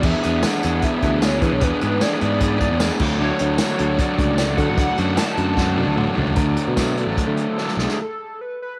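Jangly and carefree, this short indie rock excerpt rides on two crunchy overdriven electric guitar riffs, one up front with a cassette-tape tint and the other bright and very quiet, over a growly picked bass and an acoustic drum kit played with bundle sticks, its dark cymbals, punchy kick and tambourine sounding distant and roomy on tape. A hollow, woody square-wave lead carries the melody with detuned shimmer, vibrato and a filter sweep, colored by chorus, phaser, tape echo and cassette tape. A reedy, very quiet tonewheel organ holds key-clicking chords through a slow rotary until 6.3 s, as the harmony moves from E7 to Dmaj7 and then D, with drum fills at 5.6 s and 7.6 s, all in a lightly reverberant small-room home cassette sound.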